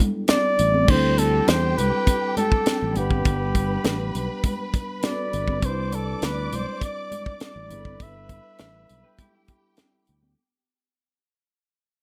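Lush, smooth 1970s-style soul at 101 BPM in G major, cut from a longer piece: a worn, slightly out-of-tune electric piano with light overdrive and soft-handed, ringing congas in the background open the fragment, and a close-miked flugelhorn with light vibrato takes the melody up front from 0.3 s. A tight funk kit with a high-tuned snare, crash, hi-hat and tight kick drives the groove alongside punchy fingered electric bass. A bowed studio string section with vibrato, portamento and analog delay joins quietly at 0.9 s over chords moving from G6/9 through Gmaj7 and Cmaj9 in a fade-out, with a dark, clean semi-hollow guitar slipping in faintly with subtle chorus at 9.0 s, all within a small, lightly reverberant room.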